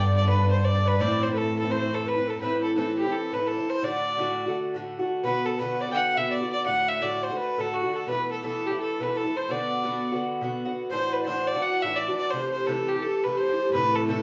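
A nasal, gut-stringed fiddle carries the melody up front in this spirited, wild Celtic hornpipe excerpt, swinging at 170 BPM in A dorian. A breathy wooden tenor recorder with chiff and vibrato adds a second line in the background, while a metallic, double-strung Irish bouzouki picks out mellow accompaniment. A dark, intimate bowed cello holds the bass only for the opening 2.4 seconds and returns at 13.7 seconds, all set back in a small room with wet reverb.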